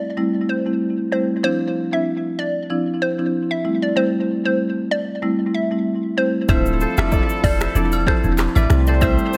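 A woody rosewood marimba opens this romantic, breezy afrobeats passage at 0.2 s, a hollow, detuned square-wave pluck with chorus carries the melody from 0.5 s over C6 and Dm9 chords at a swung 95 BPM, and at 6.5 s a deep, boomy 808-style bass, an electronic afro-pop drum kit with finger snaps, handclaps, metallic hi-hat, kick, rim click and shaker, a punchy horn section, a crisp fingerpicked kora riff, and background agogo bells and woodblock all join, with tape echo on the marimba, pluck, horns and kora in an echo-heavy, lightly reverberant mix.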